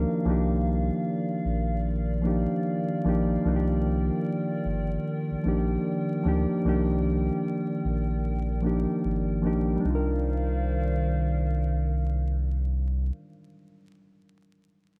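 A reedy, mellow electric piano sits up front, playing accompaniment that opens on a Cm11 chord through a cassette-tape character and a small built-in speaker tone. This is a reflective, nostalgic lo-fi hip hop fragment cut from a longer piece, moving at 75 BPM in 4/4 with a swung sixteenth-note feel, in C minor and tuned to A4 = 435 Hz. Beneath the piano, a dark, warbling pad holds sustained, detuned chords with a sub octave, a slow attack and a long release, softened further by chorus and its own reverb. A deep, round dub sub bass sits up front alongside the piano. The music shifts into a new section at 9.8 seconds, and the pad and bass stop at 13.1 seconds, while the electric piano plays on until 15.0 seconds. Light reverb and a layer of vinyl crackle colour the whole recording.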